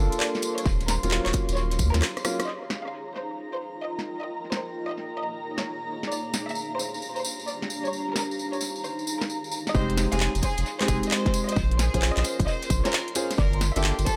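A close, earthy violin section sings a lightly vibrato melody over a breathy, phaser-tinged pad, deep vintage piano stabs and a thick saturated sub bass in this moody, late-night two-step UK garage cut in F minor at 132 BPM with swung 16ths, as a blurred granular cloud pad, an up-front garage kit with cracking snare and handclaps, a jingly tambourine and a punchy electronic kick fill out an echo-heavy mix, with piano, sub bass and kick dropping back in together at 9.7 seconds.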